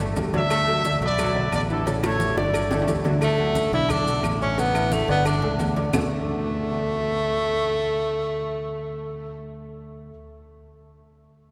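A straight 4/4 salsa groove at 177 BPM drives this sunny, festive cut from a longer piece in D major, laid down by congas, cowbell and bongos, maracas, timbales and agogo bells, and claves, which all stop at 6.0 seconds. The percussion stays low in the mix: thick-skinned, low-tuned congas played with soft hands, round bongos, ringing metal-shell timbales, woody claves and grainy maracas. A punchy fingered electric bass and a dark, worn grand piano, with audible action noise and short sustain, carry the Gsus2, D, Bm7 and A7 cycle through to the end. A trumpet section with vibrato and a smooth top states the melody up front at the opening, backed by a tight, brilliant trombone section in the background, and a drum fill leads into a breathy tenor saxophone solo at 3.2 seconds. The saxophone sounds whispered and intimate, with light vibrato and a soft attack, and the whole ensemble sits in a wet cathedral reverb with a long, church-like tail.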